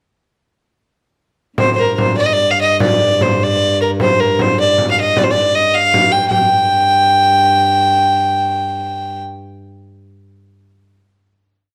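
Close, detailed microphones capture this short medieval dance in a recital hall with a moderate reverb, giving the brief piece a driving, ancient character in 6/8 and G minor. A rich, biting fiddle sits up front, playing a modal melody with ornaments between Bb4 and G5 from 1.6 seconds until 9.2 seconds. Beneath it, a bowed, fretted viola da gamba holds a ringing drone on G2, its gut-string tone reedy and airy with a light vibrato in period style. A small, bright frame drum sounds distant, as if in a large room, keeping an evenly spread pattern until 6.5 seconds. The dance starts near 98 BPM and keeps speeding up to about 116 BPM through 8.5 seconds, including the final note held from 6.3 seconds, where the fiddle's earthy, boxy voice rings out over the drone.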